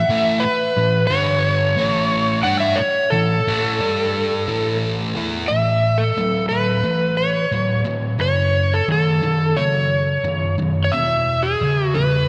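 Sunny and driving, this short rock passage is cut from a longer piece and rides a straight four-beat pulse. A sludgy, double-tracked distorted guitar carries the riff from its low register, picked and sitting up front for the full 12.3 seconds. Over it, an overdriven slide guitar sings the melody higher up, fingered with a slide and given a slapback echo, its dark tone also placed up front. The harmony moves among A5, G5 and A before turning at 5.5 seconds toward A, F#m and a closing E5. A lush hall reverb with a long 3.0-second tail wraps the pair in a big arena sound.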